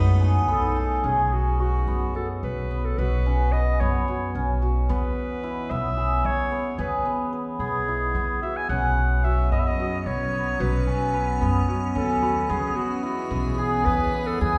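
Moving in a straight 7/8 at 220 BPM counted in eighths, this restless, playful contemporary chamber piece, cut from a longer work, sets a clear, close-miked classical clarinet melody over shimmering, ringing hammered dulcimer arpeggios and a thumpy, woody pizzicato upright bass, both up front, while a faint gut-string viola sounds only until 0.8 s, an icy, crystalline glass pad with chorus holds sustained chords at the start and returns from 9.2 s, and very quiet, bell-like glockenspiel touches from rubber mallets appear briefly, the ensemble heard from further back in a wet recital hall as the harmony moves from B7 through Bsus2 to E.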